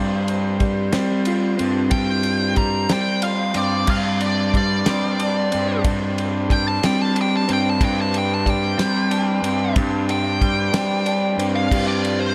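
An echo-heavy small-room mix carries this dark, hypnotic psychedelic rock excerpt in 6/8, where a lo-fi, slightly broken-up guitar riff through phaser and analog delay sits over an up-front, round fuzz bass and a damped 70s kit with a fat snare and dim cymbals, while a buzzy combo organ holds heavy-vibrato chords in the background, a fuzz lead guitar soaked in wah, distortion and delay solos high from 1.9 s, and a reedy, breathing harmonium drone enters very quietly at 3.9 s beneath the suspended chords.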